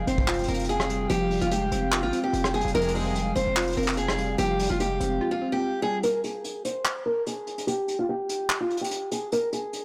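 A blown-out, overdriven recording with light reverb frames this brooding, hard-hitting half-time trap excerpt, in which an up-front picked archtop guitar with finger squeak and delay carries the melody over a crystalline wavetable pluck, a breathy pad in the background, a heavy distorted 808 bass and a punchy brush drum kit in a pumping small room, with a bold stab of fat synth brass at 2.7 seconds before the drums drop out at 5.2 seconds and a break with a filter sweep begins at 6.0 seconds, leaving only guitar and drums.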